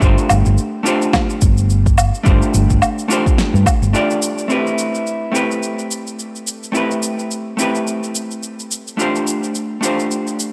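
Sunset chillout in A minor at 107 BPM with a swung 16th feel, this wistful, relaxed cut from a longer piece pairs a clean, dark, picked vintage hollow-body jazz guitar, bathed in tape echo and shimmer reverb, with a round, up-front short-scale fingered bass carrying tube saturation. A deep, layered, overdriven electronic kick plays alongside the bass from the start until about 3.8 seconds, with the bass dropping out at 3.9 seconds, while electronic shaker, woodblock and a fat snare keep going throughout. The harmony moves from G7sus4 to Am9 at 4.5 seconds and later returns, all captured in a dry, gritty recording with transformer saturation, light reverb and digital ambience.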